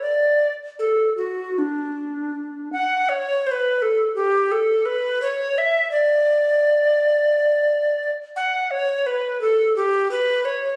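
Radiant and flowing, this short passage cut from a longer baroque-style classical fantasia features a mellow tenor recorder playing alone in D major, moving with rubato at around 76-87 BPM in 4/4. The woody, airy tone carries vibrato and a crisp chiff on each attack, sitting up front and expressive as the line ranges from D4 to F#5, with a new section arriving at 3.1 seconds. A moderate recital hall reverb surrounds the instrument, captured on a phone in the room and shaped by compression.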